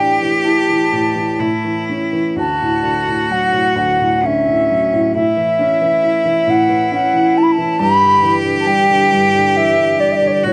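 Recorded live in a small room with a moderate touch of reverb, this tender, wistful Celtic slow air drifts in 3/4 around 67 BPM with uneven, rubato beats. A reedy wooden baroque flute carries the melody with a pure, straight tone and crisp attack, while an up-front bowed cello adds a biting, airy second line with light vibrato. A dark, worn upright piano, slightly detuned and full of audible action noise and long sustain, accompanies through chords moving from A7sus4 to Dmaj7 and on to Em7/G in this short excerpt from a longer piece.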